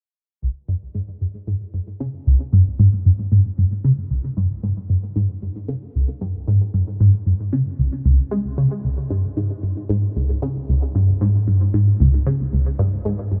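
A straight 4/4 pulse at 114 BPM carries this short ambient passage, cut from a longer piece, with a hypnotic, mysterious mood. A single resonant blip pluck plays the riff from 0.4 to 13.4 seconds, ranging from Db2 to Ab3 and sitting up front in the mix. Its tone is squelchy and detuned, mixing sawtooth and triangle shapes with ring modulation, and each note has a fast attack and a short decay. A phaser, a subtle chorus and a delay colour the pluck, while a filter sweep runs across the whole passage. Light reverb gives the sound a modest sense of space.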